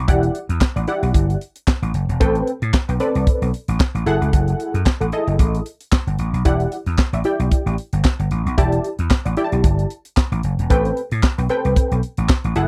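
Early-eighties boogie funk with a slick, funky mood, this short cut from a longer piece rides a lightly swung sixteenth-note feel in four. A tight funk drum kit sits up front with a high-tuned snare, a tight kick, hi-hat and handclaps, its sound dry, airy and polished. The vintage slap bass opens the passage on its own at 0.0 seconds, an electric, amped and punchy tone that sits in the low register beneath the band. From 0.1 seconds a funky polysynth comp joins, nasal and detuned with a filter pluck on a fast attack, its sawtooth and pulse-wave voices thickened by chorus and a sub octave. The harmony moves through minor ninth chords, starting on Em9 and passing through Am9 and F#m9 before returning. The whole thing is captured as a close, dry 1970s-style studio recording with little reverb.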